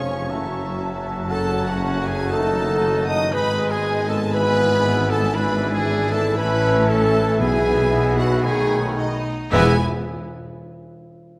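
A lush violin section carries the urgent, restless melody of this fast romantic orchestral passage in E major at 118 BPM, while a second, more distant violin line, a clear clarinet, airy hollow flutes and a soft-edged oboe weave supporting lines; violas and a roomy bassoon fill the accompaniment, a dark, loose French horn section dominates with sustained chords, a distant trumpet adds stabs, very quiet trombones join at 0.3 s, cellos, expressive double basses and a punchy tuba anchor the bass, and round, soft-mallet timpani enter at 7.4 s, all set in a moderate scoring-stage reverb.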